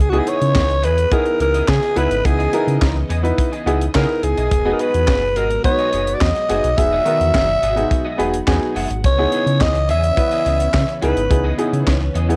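A raspy, growling alto saxophone leads this danceable early-eighties boogie funk excerpt at 106 BPM in C# dorian, riding over a deep sine sub bass with octave and a tight, dry funk kit of high-tuned snare, kick, hi-hat and handclaps, while a clear baby grand piano accompanies and adds a fill at 7.9 seconds, a slightly broken-up electric guitar riff and shimmering string-machine violins sit in the background with ensemble chorus, and cassette tape colours the saxophone, piano, guitar, strings and drums under light reverb as the chords move from C#m9 to Emaj9 and back.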